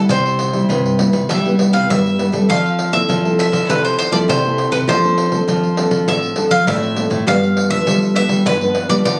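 A round, up-front mandolin carries the melody with picked double strings and plate reverb in this joyful, lively samba and choro excerpt in straight 4/4. Beneath it, a fingerpicked nylon-string guitar plays a full-bodied classical accompaniment, a second, thumb-plucked nylon-string guitar holds the bass, and a jingly pandeiro played with hard hands supplies percussion through Cmaj7, Fmaj7, Dm7/F and G7. The sound was captured on a phone in a room with studio ambience, light reverb and compression, giving it a warm acoustic character.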